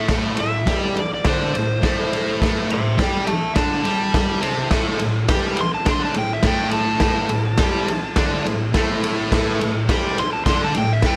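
A raw, small-room sound frames this swaggering garage rock excerpt, cut from a longer piece and sitting on A minor at 104 BPM in a straight 4/4. A thick, bright fuzz guitar, double-tracked and up front, picks out a distorted riff from A2 to G4 through the full 11.2 seconds. Over it, a dark, overdriven slide guitar takes a fingered solo in the C5 to C6 range, carrying the melody from the very start. The acoustic drum kit is gritty and saturated, with a punchy kick, a medium-tuned snare, crash and ride cymbals, and a rolled-off top that keeps it smooth despite its up-front placement. Beneath everything else, a very quiet vintage combo organ holds mellow, clean sustained chords between E4 and D5, wobbling with heavy vibrato.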